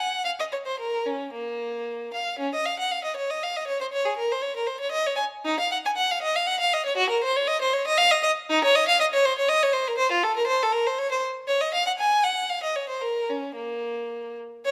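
A lone bowed violin opens this introspective, grave fragment, cut from a longer baroque-style suite movement for unaccompanied violin. Played by one player in 3/4 at roughly 109-124 BPM with a flexible, rubato feel, a short opening phrase gives way at 2.4 seconds to a longer return of the same material that runs until the recording ends at 14.7 seconds. The music settles into B-flat minor from 8.5 seconds, tuned to A4 = 442 Hz, and the line moves between Bb3 and Ab5. The violin tone is clear, smooth and even, with vibrato, and sits close and up front. A moderate recital hall reverb with a 1.5-second decay gives the solo line a sense of space around it.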